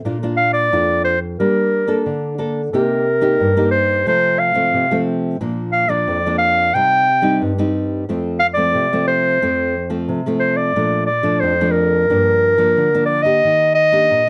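A straight 4/4 pulse at 90 BPM carries this playful, joyful fragment of samba and choro in Bb major, cut from a longer piece. A bright, fingerpicked nylon-string guitar opens the accompaniment at 0.0 seconds in a classical style, and a warm, smooth-topped clarinet enters up front with the solo melody at 0.4 seconds. Close, detailed microphones and light reverb keep both instruments present and intimate.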